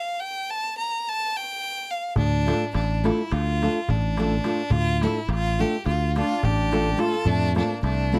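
Festive and wild, this Balkan wedding-band fragment in 9/8 opens with an intense, vibrato-rich bowed violin playing alone up front, before a growly, punchy fingered electric bass and a crisp metal-shell darbuka set back in the mix join at about 2.2 seconds, followed by a full-bodied fingerpicked nylon-string guitar at 2.5 seconds, with a reedy single-reed accordion adding a clear second line from 6.2 seconds, in a dry, close 1970s-style studio recording.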